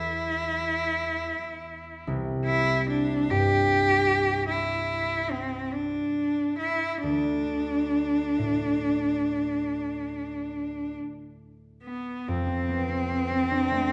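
The rhythm moves in a slow, rubato 12/8, with the dotted-quarter pulse drifting between 44 and 52 BPM and giving this impressionist classical duo a wistful, hazy sway. A single bowed cello carries the melody up front, its tone rich and focused with vibrato and a smooth top, singing between B3 and G4. Beneath it, a concert harp supplies fingerpicked accompaniment from deep C2 up to D4, its acoustic sound mellow and ringing, also placed close. Set in D dorian, the harmony begins unaccompanied by any chord before settling on Cadd9 at 2.1 seconds and later a bare D5. At 12.3 seconds a new section turns toward F6 just before this fragment of a longer piece breaks off. A wet recital-hall reverb with a 1.5-second decay surrounds both instruments in a soft halo of space.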